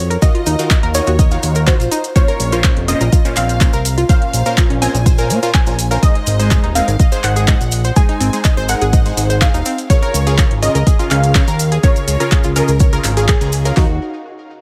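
This expansive, driving progressive house excerpt runs at 124 BPM in Eb dorian. A fat, saturated analog bass pumps beneath up-front, tape-warm deep house drums with a deep kick, fat snare, handclaps and metallic hats. Alongside them come sidechained, punchy supersaw stabs with phaser, chorused analog pluck arpeggios, a lush unison pluck melody shadowed by a distant, vibrato-rich violin section, and a grainy cabasa. The harmony moves through Ebmadd9, Bbmadd9, Ab and Db6 to a band accent at 13.3 seconds.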